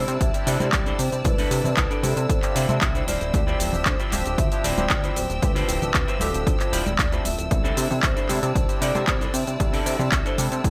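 Nu-disco at 115 BPM in C major, this groovy, feel-good excerpt rides a punchy, tape-warm electronic kick and a house kit of handclaps, hi-hat and shaker, with damped, thin-skinned congas sitting in the background from 0.6 seconds and a glossy, detuned synth bass pumping against the kick. A barky tine electric piano with lush chorus and a clean semi-hollow guitar riff fill the middle, while a rich violin section holds sustained chords behind them. Over the C69 to Dm11 changes, an airy vibraphone with soft mallets and tape echo carries a ringing melody in the distance.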